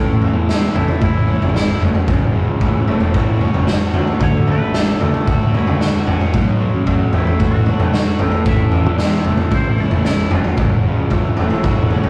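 A bright, double-tracked overdriven guitar riff opens this upbeat, jangly indie rock excerpt alongside a round, fuzzy picked bass in the background; a punchy, gritty drum kit of kick, snare and toms lands up front at 0.2 seconds, and a clean, twangy guitar melody sits further back from 0.8 seconds, while the chords cycle through A, F#m7, Dmaj7 and Bm7 in a rough rehearsal-room sound with light reverb.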